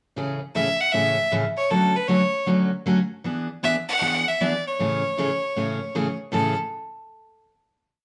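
Country in A major at 156 BPM with a playful, swinging 8th-note feel: a full-bodied picked steel-string acoustic guitar plays four-to-the-bar rhythm through Amaj7, Dmaj7 and E7 from 0.2 seconds, while a biting fiddle with light vibrato enters at 0.6 seconds with motif-based song phrases, both up front in a wet studio reverb that captures the band playing live together before the piece settles on a final chord at 6.3 seconds.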